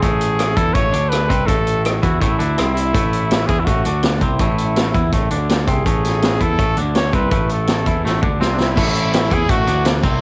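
Trumpet, twangy guitar, fuzzy bass and a vintage drum kit open together at a brisk 165 BPM in this carefree, wistful indie rock excerpt: the clear trumpet sings a smooth, vibrato-touched melody over the bright, clean guitar riff, round overdriven bass and punchy, dark-cymballed drums with their rolled-off top; the cassette grain and light reverb give it the feel of a home recording, and after a drum fill a crunchy overdriven guitar with lush chorus enters in the background at 8.8 seconds.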